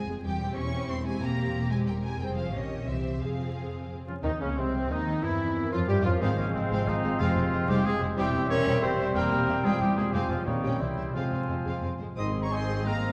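Classical and stormy, this fast, restless F minor movement in 3/4 at 183 BPM opens with lush, distant violins carrying the melody over a second violin line, viola accompaniment, ringing harp arpeggios and woody double basses with cellos. At 4.1 seconds mellow French horns and distant trumpet stabs arrive, and at 4.2 seconds an airy flute, oboe, faint clarinet, vintage-toned bassoon and very quiet trombones join, all set in a moderate scoring-stage reverb with a dark production and vinyl crackle.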